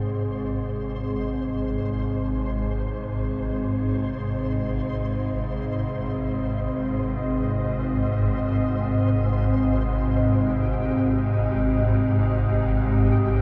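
A swarming, detuned drone sits up front in the low register, warbling and tense as it evolves beneath a deep, moody pad whose sawtooth chords, thickened by chorus and shimmer reverb, hold on Ab before shifting to Cm/Ab at 10.1 seconds. This ominous, desolate dark ambient drone moves in free time in Ab major. A faint, flickering grainy texture fades in within the upper register across the whole 13.4 seconds, the cut from a longer piece bathed in a huge, wet reverb with a dark production.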